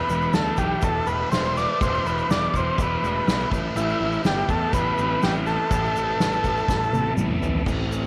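Psychedelic rock in A minor at 123 BPM, this short cut from a longer piece feels hypnotic and mysterious, moving from Esus4 to Amadd9 at 3.5 seconds. A buzzy, overdriven combo organ carries the melody up front with heavy vibrato and tape echo, stopping at 7.1 seconds, while a mellow tonewheel organ holds flute-like sustained chords in the background through a slow rotary speaker, its key click audible. A dark, double-tracked fuzz guitar plays a picked riff colored by distortion and phaser, and a round fuzz bass, overdriven with tube saturation, anchors the low end. The drum kit is played with soft mallets on drums and cymbals, sounding roomy yet up front with a punchy kick and medium-tuned snare, and it delivers a fill from 6.7 to 7.7 seconds. A grainy, bright egg shaker sits in the background, and light reverb gives the whole a small-room ambience.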